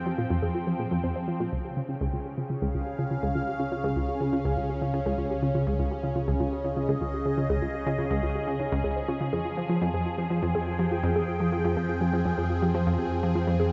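A swirling, bright phased pad and a deep, round bass fading in open this cosmic, expansive excerpt of sequencer-driven ambient space music, soon joined by an up-front detuned sawtooth pluck riff and a background of warbling, lo-fi arpeggios with a filter sweep, both carried on chorus and tape echo, as the chords move from Fmadd9 to Db and back to Fmadd9 at 9.3 seconds, all bathed in a huge, long-tailed reverb with the top end rolled off above about 8 kHz.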